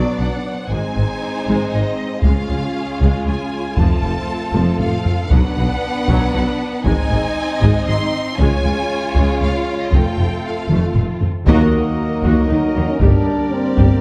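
Relentless and heroic, this excerpt from an epic orchestral film score moves in a stately three-beat metre, built on a cycle of chords that shifts from B minor through A-flat, D-flat and F before turning to E-flat minor and G minor. A rich, focused violin section carries the melody high above a lush second violin line and a smooth viola section in the background, while a dark, distant French horn section holds sustained chords. The low end is anchored by a mellow, very quiet tuba, a very quiet cello section and a distant double bass section. Heavy-stick taiko drums enter at 2.2 seconds and dominate the mix, with fills punctuating the phrase ends. At 11.5 seconds a full-band accent opens a new section as a thick, romantic pipe organ on foundation stops joins the sustained chords, with a very quiet trombone section having entered a moment earlier at 11.4 seconds. The production is dark, set in a moderate scoring-stage reverb.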